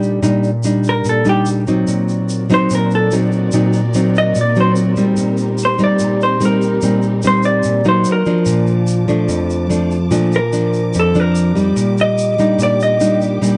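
A dark, clean hollow-body jazz guitar carries the melody up front, entering at 0.9 seconds with a picked, compressed tone and analog delay. It takes a solo over a relaxed, romantic bossa nova at 146 BPM in a straight 4/4, in this short section cut from a longer piece. Beneath it, a fingerpicked nylon-string guitar with old strings gives a woody, classical accompaniment that sits equally close, while a grainy egg shaker ticks along quietly from the start. A lush, bowed string section with expressive vibrato joins at 1.9 seconds, holding sustained chords far in the background. The harmony moves from D7b9b13 over Bb through Cm7 and Ebmmaj7 to Bbmaj7, and the whole is set in a moderate small room with vinyl crackle and a dulled, vintage top end.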